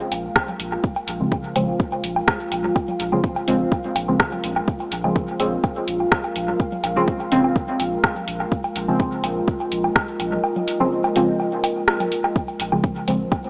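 Dub techno at 125 BPM in Bb minor, this meditative, cavernous excerpt rests on a single Bbm7 chord, carried by a dark, detuned sawtooth pad with chorus, built-in reverb and sidechain pumping over a soft, round sub bass that also pumps, while an up-front, tape-warm layered electronic kick and an overdriven analog drum machine's hi-hat and rim click with dub echo drive the groove beside dub-echoed, pumping woodblock and congas, and from 1.2 s a mellow, warbling vintage chord stab with chorus, phaser, pumping and dub echo decays into an echo-heavy mix with plate reverb and a small-speaker sound.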